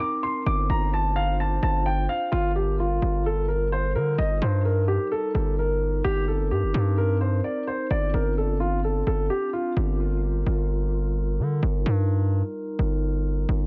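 A distorted 808-style bass, heavy and saturated with a fast attack and a noisy edge, sits up front in this dark, menacing trap excerpt in G minor, moving at 129 BPM with a half-time feel. It enters at 0.5 seconds beneath a mellow, long-sustaining baby grand piano melody, filtered and touched with tape echo, that plays until 9.7 seconds, while a glassy, ethereal glass harmonica holds slow-attack chords in a boxy small room throughout. The harmony circles from Dm7/G through Gm7, Eb/G and Cm7/G, leaving bass and harmonica alone over the final stretch to 13.7 seconds.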